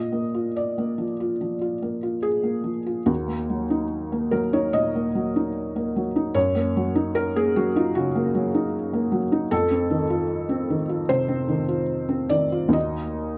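A felt-muted upright piano plays alone from the first moment, soft, mellow and intimate with audible action noise, up front in a close, detailed and nearly dry recording, in this reflective, wistful neoclassical minimalist passage in Eb minor at around 75 BPM with rubato, uneven beats, spanning Eb2 to Eb5 as its chords move from Bb through Ebm, Gb6 and F7 before returning to Ebm at 12.7 seconds, cut from a longer piece.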